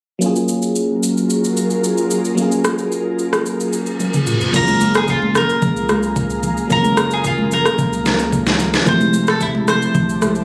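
Amapiano at 111 BPM in F# major, warm and relaxed, opening with a glassy, bell-like FM electric piano with chorus over a smooth, up-front R&B drum kit with a knocking kick and deep snare, while an ethereal pad with ensemble chorus, reverb and sidechain pumping sustains F#maj9 chords beneath. A reverse cymbal and drum fill lead into the second section at 4.5 seconds, where a punchy sine sub bass with a pitch-drop attack, damped congas and a bright, woody picked mandolin with tape echo enter, the harmony shifting to Fmaj9 near the end. The sound has light digital ambience, club reverb and compression, as if caught on a phone in the room, in this short cut from a longer piece.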